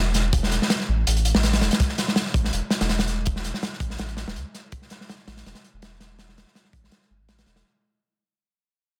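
A crunchy acoustic breakbeat kit leads this raw, frenetic drum and bass and jungle excerpt, its hi-hat, tight kick and medium-tuned snare sounding saturated and gritty, sitting up front with a mid-forward, rolled-off top and the feel of a studio room. Underneath, a soft dub sub bass starts at 0.0 seconds, a deep, round tone that blends triangle and square waves with a fast attack and sustained notes, staying low in its register. The drums come in at 0.1 seconds, and the groove runs in a steady four with a slight swing on the sixteenths. The whole short piece is a single section that fades out across its length until 7.7 seconds, clearly lifted from a longer track. The mix is dry and close, with a dense, heavily limited modern master that keeps the energy pressing forward.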